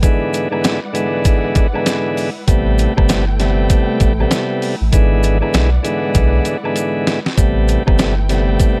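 This dark, reflective boom-bap hip-hop clip moves at 98 BPM in 4/4, its sixteenths swung, with a gritty, pitched-down sampler-style drum kit up front that pairs a thumpy kick with a medium-tuned snare and hi-hat, and adds a drum fill from 6.2 to 7.4 seconds. A shouting tonewheel organ, lightly overdriven through a stopped rotary speaker and colored by cassette tape, carries the accompaniment in A dorian, moving between E7/G# and Am9. Behind it, a studio string section holds sustained bowed chords with vibrato and portamento, its smooth top sitting in the background. Maracas, woodblock and group handclap add close, acoustic percussion at a low level. The opening 2.5 seconds form a break, after which a deep, thick, triangle-toned sub bass enters up front, saturated and sustained, playing until 8.6 seconds. A light reverb surrounds the mix, and the clip is cut from a longer piece.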